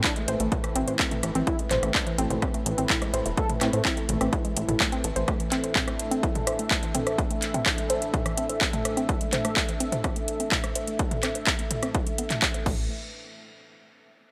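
A woody, wave-folded synth pluck runs arpeggios through the whole clip under a constant filter sweep, driving this dramatic, cinematic melodic techno cut at 126 BPM over Am and then Dsus2/A. A dark, detuned analog pad, a mellow synth brass melody that ends at 4.3 seconds, and a very quiet, phasered analog drone all carry chorus, while a punchy, funky analog bass plucks beneath until 5.2 seconds and returns briefly at the very end. A punchy electronic kick and an overdriven house kit with metallic hats, claps, rim clicks, toms and crash sit up front, with a barely audible downlifter at the start and light reverb overall.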